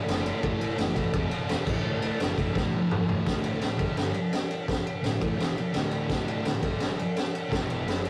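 A bright, double-tracked fuzz guitar riff kicks off this rowdy, swaggering garage rock excerpt at 0.0 seconds, quickly joined by a punchy overdriven picked bass sitting in the background and an up-front, gritty drum kit with a boomy kick, high-tuned snare, crash, ride and toms, driving a straight 170 BPM in D major through power chords like A5, G5 and E5, with a drum fill at 2.6 seconds leading into a new section at 3.3 seconds, all captured in a rough, saturated rehearsal-room sound with a short, wet booth ambience.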